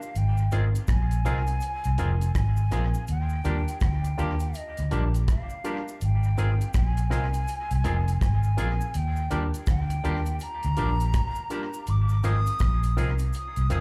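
A dark, round, foam-muted electric bass sits up front in this tender, romantic lovers rock reggae excerpt, swinging gently over a dry acoustic drum kit with a tight kick, hi-hat and rim click touched by tape echo, while a compressed cabasa sits in the background. A breathy metal jazz flute carries the melody with vibrato, a soft attack and an unsteady tone, dressed in tape and slapback echo, as a barky, lightly overdriven tine electric piano and clean, scooped, twangy guitar stabs fill in from 0.5 seconds. The harmony sways between Ab6 and Ebmaj7, and the whole performance sounds like a live gig heard through a small club's PA.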